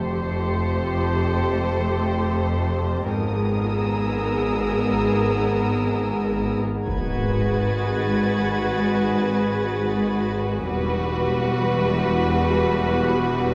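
A bed of muted, con sordino strings opens this uneasy, mysterious suspense cue in free time, cut from a longer piece and tuned to A4 = 438 Hz. The studio violin section carries a veiled melody while the chamber violas sit close in the background with soft-attack accompaniment, and the double basses and cellos bow a dark, vibrato-laden bass line beneath. A warbling, lo-fi pad with chorus holds nostalgic sustained chords, and a swarming, detuned granular drone evolves underneath. A faint, high violin texture hovers above until 10.3 s. At 6.9 s a huge, bright impact hits as the harmony settles into G# phrygian, and a chamber violin section enters with a smooth second line on a single F#4. The chords drift from Fadd9 and Abmadd9 toward G#m7 and Emadd9, all set in a moderate scoring-stage reverb.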